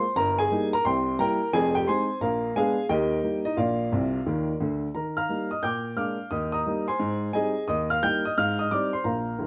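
Set in a moderate studio ambience, this playful, exuberant stride jazz passage at 176 BPM in Eb major features a solo upright piano with a woody, vintage tone and long sustain, placed up front and spanning D1 to G6 with a swung feel, moving through changes such as C7, Fm7 and Bb7b9 before a fill at 3.9 s leads into a new section at 4.9 s that moves through Eb, Bb7 and Abmaj7.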